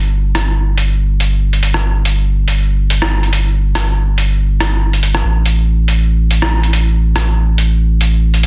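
A deep, thick sub bass with tube saturation opens this brooding, dark deep dubstep excerpt at 141 BPM in a half-time feel, joined at 0.3 s by a gritty, pitched-down sampler-style trip hop drum kit of hi-hat and rim click with a soft-clipped snare and a swung 16th-note feel, all held dry and up front in a dense, heavily limited modern master.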